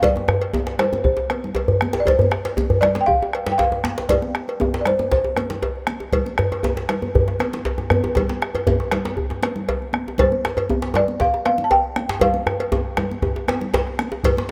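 A festive, driving West African drum ensemble opens at once, with a woody balafon melody played with soft rubber mallets sitting mid-forward over round, close bombo and a metallic cowbell. Two tight, cracking djembes drive the groove, one up front in a live room and the other in a small room, while high-tuned congas add a bright, thin-skinned, compressed and saturated edge. The balafon drops out at 5.8 seconds and returns at 10.2 seconds before a drum fill from 12.2 seconds, all in a rough home-demo mix with moderate plate reverb.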